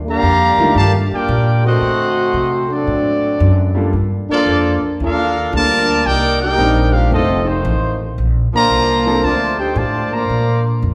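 A swinging 4/4 pulse at 113 BPM drives this brassy big band excerpt in Bb major, cut from a longer piece. An up-front upright bass, plucked and woody, holds down the low end from the first beat. Over it, a tight trumpet section carries the melody with light vibrato, while a trombone section with a warm ensemble tone plays a second line beneath. A clear baby grand piano joins at 0.6 seconds with intimate accompaniment, its action noise audible and its notes sustaining long before it drops out at 9.2 seconds. The harmony moves from Ebmaj9#11 through D7b9, Gm9, Cm9 and F7 to settle on Bbmaj9, all set in the reverberant bloom of a recital hall.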